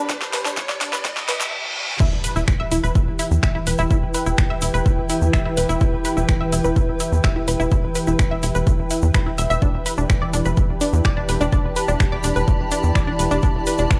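Set in a light reverb with a high-pass filter across the mix, this cinematic, melancholic melodic techno piece in E minor moves at 126 BPM in a straight 4/4. It opens on a short build-up, where a drum fill, a riser, a reverse cymbal and a filter sweep on the synth arpeggio gather over a G/E chord. An electronic impact marks the drop at 2.0 seconds, ringing until 3.9 seconds, as a tight, nasal sequencer bass of sawtooth and square waves enters under an Em chord, its decaying filter pluck pumping against the kick. Up front, a punchy, analog electronic kick with tape warmth and studio reverb drives a layered deep house kit of fat snare, metallic hats, toms, crash and finger snaps, while a grainy egg shaker sits in the background. A detuned unison pluck spins arpeggios through a dub echo above a thick, warbling pad carrying sustained chords with chorus and vintage 12-bit sampler grit. Alongside them drifts a cloudy, evolving granular pad with its own built-in reverb, and the harmony returns to G/E at 9.6 seconds in this excerpt from a longer piece.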